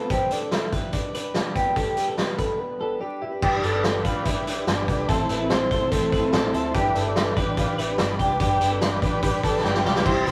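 A straight 4/4 pulse from a gritty, punchy vintage drum kit drives this youthful, nostalgic slice of jangly indie pop, where a bright, twangy twelve-string electric guitar plays phaser-tinged arpeggios over a full-bodied fingerpicked acoustic guitar, and a round, octave-layered synth lead carries the melody through chorus and delay; after a brief break, a buzzy, heavy-vibrato combo organ and a dark, foam-muted electric bass join at 3.4 s, the organ and drums each take a fill near the end, and a shimmering string machine of violins surfaces very quietly at 10.1 s, all within a rough rehearsal-room recording marked by tube saturation and vinyl crackle.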